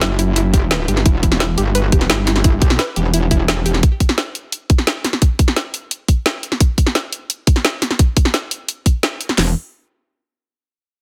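A metallic, wobbling FM wobble bass with distortion, chorus and overdrive sits up front in this tense, mechanical excerpt of dark technical drum and bass at 173 BPM in E minor, driven by two layered electronic kits, one with a tight kick, cracking snare and crisp hats and an overdriven one with a woody snare and bright hats, while a lush, detuned sawtooth unison pluck plays arpeggios in the background over an Emadd9 chord with sidechain pumping and digital delay until 3.8 seconds, all within a dense, heavily limited modern master.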